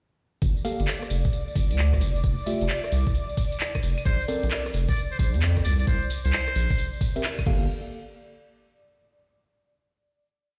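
A knocking two-step kick and skipping, swung hats, rims, claves, tambourine, claps and crash from a punchy analog drum machine drive this moody, late-night UK garage piece at 132 BPM in G dorian, with a thick, saturated sub bass riff pumping up front from 0.4 seconds. An airy, breathy pad holds a high note through chorus and phaser, while a mellow tine electric piano drops sparse echoing chord stabs and a buzzy, close-miked trumpet with metal mute plays short phrases from 4.1 seconds. A stone-room reverb, as if over a big sound system in a bare room, frames the drop before a final hit at 7.7 seconds.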